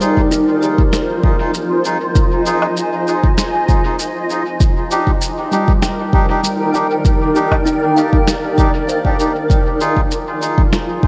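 A meditative, deep stretch of ambient dub, cut from a longer piece, in which a cloudy, evolving granular pad with built-in reverb and ensemble chorus holds sustained chords up front, moving from Fm7 to Ebmaj7 at 4.6 seconds and back to Fm7 at 9.5 seconds. Woody, hollow kalimba arpeggios sit in the background with a diffuse ambient delay, while reedy, breathy melodica stabs carry a dub echo. A muffled, pitched-down shaker, snare and woodblock kit that also carries dub echo plays from the start, and a tape-warm electronic kick sits up front from 0.2 seconds, all soaked in a dreamy cathedral reverb.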